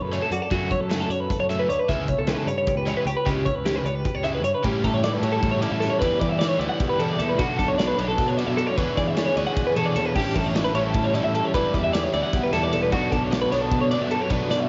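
This cut from a longer piece sounds like a home cassette recording, its top end capped at 7.6 kHz and lightly touched by studio reverb. It is wistful, intricate math rock with a midwest emo heart, racing at 305 BPM in 7/8 with a straight feel in B minor. Up front, a clean, twangy twelve-string electric guitar plays accompaniment with tremolo, while a second, compressed twelve-string sits in the background picking high arpeggios, both carrying a cassette tape tint. A double-tracked overdriven electric guitar plays a warm riff, and a dark, round fuzz bass anchors the low end. The acoustic drum kit, with a punchy kick and medium-tuned snare in a pumping room, works across the hi-hat, ride and crash. After the opening on F#m7 and C#m7b5, the harmony moves at 4.6 seconds through A7sus4, Em9, Bm9 and E13, and a drum fill arrives at 14.5 seconds.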